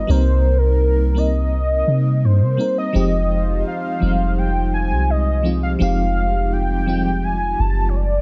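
A velvety synth lead carries the melody up front in this moody, longing piece of contemporary R&B, its smooth, full-bodied, detuned tone colored by chorus and vibrato. Beneath it, a soft 808-style bass sits close and round, its deep, dark notes decaying after each fast attack. An FM electric piano layered with a soft pad supplies the accompaniment with a lush, dreamy sound, treated with chorus and tremolo. From 2.9 s to 5.8 s, a mellow analog pad adds sustained chords in the background, fading in slowly and lingering on a long release, as the harmony moves from Cm7 to Fm9. The straight 4/4 feel is wrapped in digital ambience, and the clip is cut from a longer piece.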